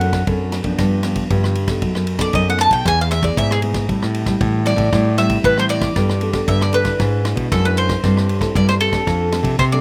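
A bright, up-front bowl-back mandolin carries the melody with picked double strings, taking a solo through the first 6.0 seconds of this lively, yearning samba and choro excerpt in A minor at 116 BPM in a straight 4/4. Beneath it, a full-bodied, fingerpicked nylon-string guitar plays classical-style accompaniment, while a second nylon-string guitar with a deep, warm tone holds down the bass line. A swinging big-band drum kit sounds natural and acoustic, its punchy kick joined by ride cymbal and rim clicks. The harmony passes through dominant-flavoured chords such as D7/F#, G7 and B7/F# before reaching Am7, then the second passage from 6.0 seconds moves through Gadd9, E7/G#, C6/G and F6. Recorded outdoors with little reverb, the sound is dry and close, and the music is cut from a longer piece.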